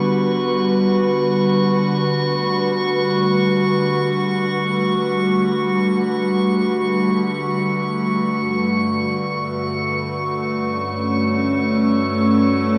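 An evolving wavetable pad stands out most, up front and bright, its detuned, morphing triangle tone holding sustained chords from G2 to B4 with a slow attack and long release. This ambient piece floats in free time in G lydian, tuned to A4 = 439 Hz, and the mood is weightless and luminous. Alongside the pad, a drifting glass-harmonics texture sits quieter on a high C#6, its calm sine tone carrying glassy, drifting overtones. Both parts are treated with chorus, built-in reverb and shimmer reverb, and the whole is bathed in a wet spring reverb with a 2.5-second decay. The harmony rests on Gmaj7 before moving to Dmaj7/G at 8.3 seconds, and the passage, cut from a longer piece, runs to 12.8 seconds.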